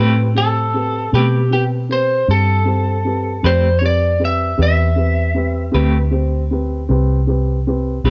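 A twangy, slightly broken-up lead guitar carries the melody of this mournful, brooding slow blues in 12/8, entering at 0.4 s and falling silent at 6.1 s over a single Am9 chord. Underneath, a round, foam-muted electric bass sits up front, while a clean semi-hollow guitar with tremolo and a woody, boxy upright piano with short sustain fill in the accompaniment. The dry sound carries the wobble of worn cassette tape, its pitch drifting throughout this short cut from a longer piece.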